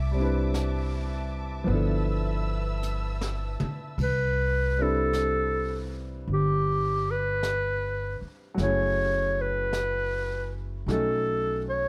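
A smooth, lightly vibrato clarinet with scooped notes carries the up-front solo melody from 4.0 s in this late-night, intimate jazz ballad, swinging slowly at 52 BPM in C major, while lush bowed strings hold sustained chords until 4.0 s, a clear vintage grand piano with deep bass accompanies throughout, a woody pizzicato upright bass sits close, and brushed drums with dark cymbals and a boomy kick enter at 0.5 s and play a fill just before the clarinet arrives, the whole cut from a longer piece and set in light reverb.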